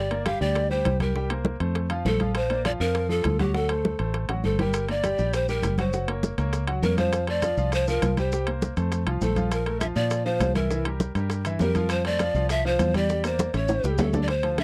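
A fiery, danceable salsa groove moves at 201 BPM in a straight 4/4, with congas, bongos and timbales entering at 0.1 seconds behind the pan flute, piano and bass that open the clip. The breathy pan flute carries the melody up front between G4 and F5, its wooden tone marked by tongued chiff, vibrato and a slightly unsteady, close-miked intimacy. Beneath it, a dark, round fingered electric bass sits forward in the mix, foam-muted and heard direct and amped, while a bright concert grand piano supplies accompaniment with a brilliant, polished tone, long sustain, deep low end and audible action noise. The percussion stays close and dry: soft-handed congas with a thin skin, tight high-tuned bongos struck hard, and ringing metal-shell timbales, with drum fills arriving at 4.3 and 13.4 seconds and grainy, band-limited maracas joining in the background at 4.7 seconds. The harmony travels from Gm through F, Bb and D7, later touching Bbmaj7, Fmaj9 and Em7b5 before closing on A7, all captured in a dry, close 1970s-style studio sound in this passage cut from a longer piece.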